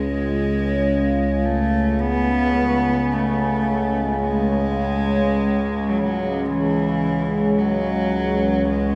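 An intimate, close single cello plays a sul tasto melody with a soft attack and light vibrato, bathed in shimmer reverb and diffuse delay, over an up-front, resonant drone of moving overtones colored by chorus and phaser, while a deep, detuned, wave-folded pad with ring modulation enters in the background at 2.4 s, all set in a wet cathedral reverb that gives this dark ambient drone fragment an unsettling, dark mood.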